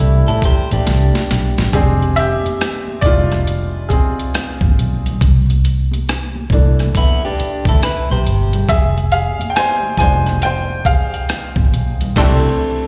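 A slow 69 BPM groove with swung sixteenths carries this smooth, soulful neo-soul R&B fragment: a gritty, pitched-down boom bap sampler-style kit with thumpy kick and high-tuned snare fills at 0.9 s, a round, foam-muted vintage electric bass sits up front, and faint, distant congas add soft-handed color, while a woody, short-sustained upright piano takes a solo from 1.7 s over C69 and Fm6, a slightly broken-up lo-fi guitar adds a second line, and a tight, brilliant trombone section stabs in the background at the opening and again in a band accent at 12.2 s, all in a live-gig, recital-hall ambience.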